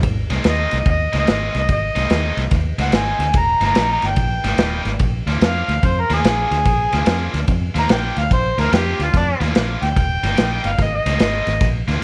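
A mellow, overdriven harmonica carries this rollicking, laid-back electric blues shuffle, soloing up front from 0.5 s with light vibrato, a soft attack, scooped notes and a jazzy, roomy character. Beneath it, a vintage acoustic kit of punchy kick, medium-tuned snare and dark ride cymbal swings the eighth notes, its pumping small-room sound rolled off at the top. A round, foam-muted fingered bass sits close and dark in the low register. A bright, picked guitar riff with overdrive enters at 0.3 s, a little further back in the mix. The harmony moves from Ab to Eb and a long Bb7 before returning through Eb to Ab, all in a light, intimate room ambience, in a passage cut from a longer performance.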